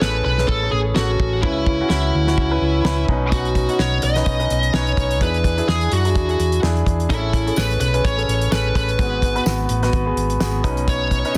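Uplifting and anthemic, this brief cut from a longer piano-driven pop piece sets an up-front, high-gain distorted lead guitar melody over clear grand piano accompaniment, a round, punchy hollow-body electric bass and a dry, damped 70s drum kit with a fat snare and tight kick, while a jingly tambourine joins in the background at 7.6 seconds, all in a small room with a dense, heavily limited modern master.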